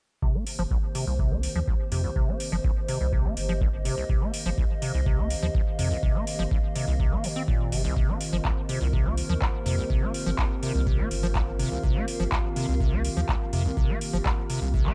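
A squelchy, resonant square-wave acid bass riff with filter sweeps opens this trippy, hypnotic acid house excerpt at 0.2 seconds alongside a deep, saturated sub bass and a deep analog kick, soon joined by metallic hi-hats and handclaps from an analog drum machine and two warbling, nostalgic tape-like pads with chorus, built-in reverb and sidechain pumping, all sitting on a single Cm7 chord in a dry, gritty hardware recording.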